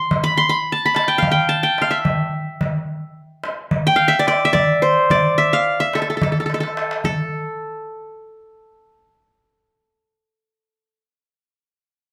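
A straight-feel 9/8 rhythm drives this hypnotic, soulful fragment of a Turkish makam ensemble piece, cut from a longer work. The fingerpicked qanun leads the melody up front with a bright-edged, triple-string ring, while a small, high clay-shell darbuka with natural skin sits distant, struck with hard hands and echoing a large room. The darbuka plays a fill at 6.5 seconds as a new section begins at 7.0 seconds, then stops at 7.3 seconds and leaves the qanun alone in a moderate studio reverb.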